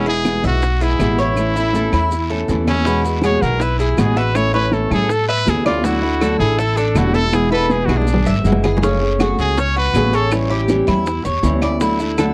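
Sunny and relaxed, this excerpt of Cuban son and guajira moves at 161 BPM in A major, with a brilliant, punchy trumpet up front taking the melody and a forceful, vibrato-laden solo with scooped notes from 2.9 seconds until it stops at 10.3 seconds. Beneath it, a bright fingerpicked flamenco guitar with audible finger squeak and a metallic, double-strung Cuban tres playing arpeggios fill out the harmony over a thumpy, dark pizzicato upright bass, while round, dry bongos, ringing high-tuned congas, woody claves, a raspy guiro and grainy maracas sit in the background, with drum fills at 1.4 and 7.9 seconds. Light reverb and a worn, warbling old-tape sound with pitch drift give the whole recording a cassette-like character.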